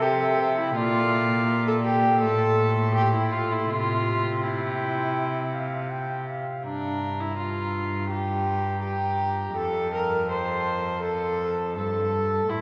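Solemn and rustic, this short excerpt from a longer renaissance-style consort dance moves at 82 BPM in a straight 4/4, set in G dorian. A soft-attacked cornet carries the melody from D5 to C6, yet it sits in the background, its warm solo line veiled behind the strings. Up front, a single bowed viola plays the second line with light vibrato and a reedy, gut-string period tone, while one bowed cello holds the bass between F2 and C3 with a similarly rich, reedy gut-string voice. All three parts play together from start to finish, and the harmony shifts from C through Bb and Am before a second section opens on Gm at 6.6 seconds and settles on F at 9.6 seconds. A wet cathedral reverb with a long 4.6-second decay surrounds the consort, lending the dance a spacious, churchly air.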